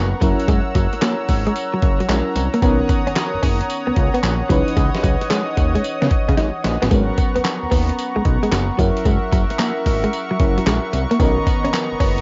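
This home cassette recording, with light reverb and a dulled top end, is a slick, bouncy new jack swing R&B excerpt with swung sixteenths, where a gritty, dusty, up-front sampler-style drum kit of thumpy kick, snare, hi-hat, handclaps and tambourine (with a fill at 6.4 seconds) sits over a fat sawtooth analog bass, while a glassy, bell-like FM electric piano and a brassy, detuned analog pad, both chorused, move through chords from F#7 to Bmaj9, C#m9 and G#m11, and a clean, direct-recorded electric guitar picks a compressed riff.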